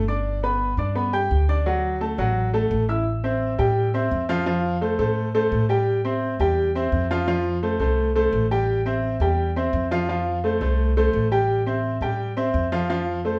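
A bright upright piano and a plucked upright bass start together in this danceable, joyful salsa excerpt. The piano sounds brilliant and intimate, with audible action noise and long sustain, while the gut-strung bass is dark, woody and thumpy beneath it. After a brief opening on G and Dadd9, the harmony settles at 3.1 seconds into a repeating sway between Am7 and F that runs to the cut at 13.4 seconds, all set in a wet, large studio reverb heard from further back in the room.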